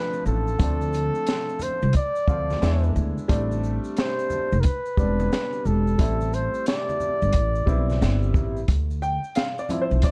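A dark, intimate small-room sound frames this short, mellow jazz-hop cut from a longer piece, with a nocturnal mood and a lazy swung sixteenth-note feel. A breathy, punchy flugelhorn carries the jazz-style melody up front until about 8.3 seconds, its smooth top sitting over a vintage upright piano that plays the accompanying chords. The pizzicato upright bass is growly and woody with steel strings, standing forward in the mix alongside an open acoustic drum kit whose boomy kick, high-tuned snare, hi-hat and shaker have a rolled-off top. Maracas and congas, played with hard hands, ring distantly in the background as if from a larger room. The harmony moves from Dm7 through E7 to a long stretch on Am11, and at 8.7 seconds the piano takes a brief solo over Dm9 to close the passage.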